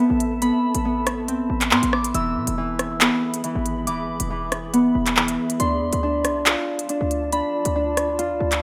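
Dark, cold drill in A harmonic minor at 139 BPM with a half-time feel. An up-front, fingerpicked Celtic harp rings out mellow arpeggios through digital delay over Amadd9, E and Dm, while a blurred, evolving granular pad sustains chords in the background. A punchy, tight 808-style bass enters at 0.1 seconds, followed at 0.2 seconds by a crisp electronic drum kit of hi-hats, handclaps and rim clicks, and a pure FM bell with chorus and delay adds a high second line in this rough home-demo cut from a longer piece.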